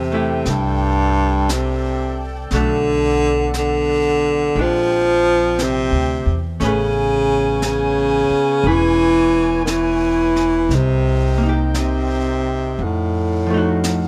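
Lightly reverberant and intimate, this fragment of a slow jazz ballad moves at 58 BPM in 4/4 with a gentle swing on the eighth notes, carrying a tender, late-night mood. Up front, a baritone saxophone sings the melody in a low register with a warm subtone, light vibrato and scooped notes, while a woody, growly pizzicato upright bass sits close beside it. A dark, clean archtop guitar picks out accompaniment on its hollow-body electric tone. Behind them, a mellow saxophone section holds soft-edged, tight sustained chords that sound distant and roomy. Brushed drums enter at 0.5 s with a high-tuned snare and hi-hat, and the harmony drifts from a rootless Fmaj9 through Bm7, Bb13 and Amaj9 to Cm7 before closing on F7b9 at 12.8 s.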